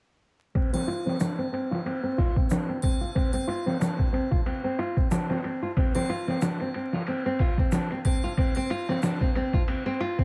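Trip hop with a smoky, hypnotic mood, cut from a longer piece and riding a swung 4/4 groove under light digital ambience and vinyl crackle. Up front, a full-bodied nylon-string guitar plays fingerpicked arpeggios through tape echo and a filter sweep from 0.6 to 10.2 seconds, beside a gritty, pitched-down sampler-style kit with a thumpy kick, medium-tuned snare, hi-hat and ride, all muffled by low-pass filtering. Faint triangle and egg shaker add small-room acoustic detail from 0.7 to 9.2 seconds.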